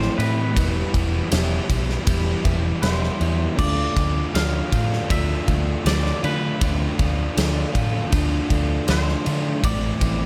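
Hazy and brooding, this short rock cut from a longer shoegaze and dream pop piece moves at a straight 79 BPM in 4/4, circling Am, Em and Dm in a small room ambience. An up-front, double-tracked overdriven semi-hollow guitar carries the riff through a lush chorus, while a clean, twangy electric guitar sings a high melody between B4 and F5, colored by phaser and slapback echo. Underneath, a dark, round foam-muted bass and a huge arena drum kit with a fat snare, punchy kick and bright crash and ride cymbals hold the ground throughout.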